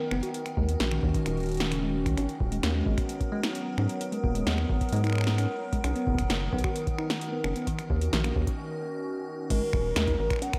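An icy, crystalline glass pad opens this eerie, cerebral IDM piece with sustained chords carrying chorus and a 12-bit sampler grit, as a bell-like tine electric piano spins delayed arpeggios, a rubbery square bass bounces beneath, and an analog drum machine adds punchy snare, metallic hi-hats, finger snaps and crash cymbal. A deep, tape-toned electronic kick joins at 0.6 seconds, and the chords move through minor sevenths, ninths and a major seventh under a lush hall reverb that gives an arena-sized sound. After a brief break at 8.6 seconds, a warbling, nostalgic lead with chorus, tremolo and echo takes up the melody at 9.5 seconds.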